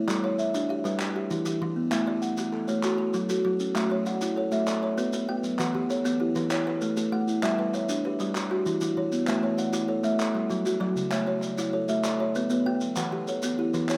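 A rippling 12/8 mbira-style interlocking cycle at 130 BPM carries this warm southern African traditional excerpt in A mixolydian, as an up-front, woody kalimba with slapback echo and a buzzing, boxy kalimba both play close-miked arpeggios from the start, while crisp group handclaps and grainy, mellow maracas sit distant in a large room behind them.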